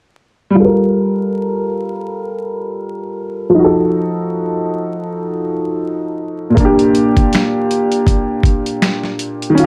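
A clear, woody upright piano, slightly detuned and softened by a low-pass filter and plate reverb, carries a hazy, nostalgic lo-fi hip hop excerpt at 80 BPM with a 16th-note swing, moving through Gm9, F7b9 and Bb6 under a filter sweep and vinyl crackle until a gritty, overdriven sampler-style drum kit with thumpy kick, snare, hi-hat and finger snaps joins at 6.6 seconds.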